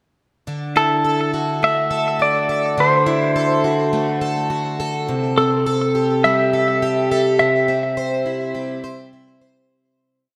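Dream pop with an ethereal, floating mood, this short piece moves at 104 BPM with a straight pulse. A picked, plugged-in twelve-string acoustic guitar enters at 0.5 seconds with shimmering, octave-doubled arpeggios in a fingerpicked roll pattern, its full-bodied tone thickened by lush chorus and delay. A clean lap steel guitar joins at 0.8 seconds, sitting up front with a twangy, compressed slide voice as it sings a motif-based melody in song-like phrases, trailed by its own delay. The harmony drifts from Dadd9 to Am7/C and settles on C, and the whole verse is soaked in a long plate reverb that gives the mix a dreamy wash. A fade-out begins at 7.4 seconds, with the lap steel stopping shortly before the twelve-string's final notes.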